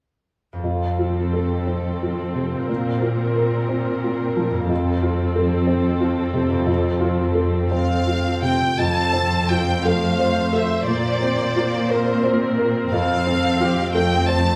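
This cinematic, emotional film score excerpt for orchestra unfolds in a hopeful, tender mood at a rubato 59 BPM in 6/8, settled in F major. A concert harp ripples arpeggios from 0.5 seconds, ringing and fingerpicked in the background, joined almost at once by a felt-muted upright piano whose soft, intimate tone has a short sustain. A distant, smooth viola section and an expressive cello section with vibrato and portamento supply the accompaniment and bass beneath them. At 7.7 seconds a rich violin section enters up front with the melody, its soft attack and sliding portamento lending the line a singing quality. The harmony rests on F before shifting to Bbsus2 and returning to F, all bathed in the wet reverb of a recital hall.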